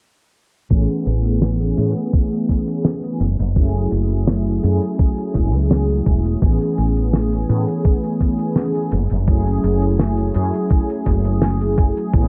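At 0.7 seconds a thumpy, sampler-style electronic kick, a dry 70s drum kit with a fat snare, hi-hat and rolled-off top, a round, woody fretless bass and mellow synth brass all arrive together in this nostalgic, melancholic vaporwave fragment from a longer piece. The kick and the hollow-bodied bass sit up front. The brassy, detuned sawtooth synth carries the accompaniment with a subtle chorus and analog delay, evolving under a filter sweep that runs through the whole passage. The harmony alternates between Amaj9 and F#m9 in an unhurried straight 4/4. At 12.1 seconds a warbling, lo-fi tape-like pad slips in, barely audible. The production is dark and low-pass filtered, with a light studio reverb that gives the whole a hazy, faded glow.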